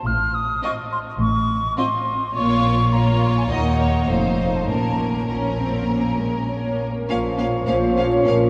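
A hollow, up-front concert flute opens this playful, whimsical cinematic cue in a magical, quirky mood with uneven beats. A close, lush cello section and a close double bass section carry the bass, a distant violin section plays the melody over a clear violin second line and woody violas, and a background marimba joins at 6.5 seconds before mellow clarinet, clear oboe, bassoon and a very quiet French horn section enter at 7.1 seconds, all bathed in a wet cathedral reverb.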